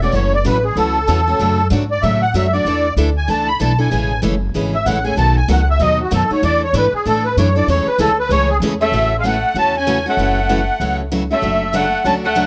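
Lively and charming, this swinging jazz manouche fragment features a reedy, shimmering musette accordion up front, soloing through the opening 8.9 seconds. Two picked steel-string acoustic guitars supply the accompaniment, one bright and the other full-bodied with fresh strings in the background, while a woody, thumpy pizzicato upright bass on gut strings anchors the low end. At 8.8 seconds a single bowed violin joins with a nasal, airy second line, and the recording has the dry, close sound of a small 1970s-style studio.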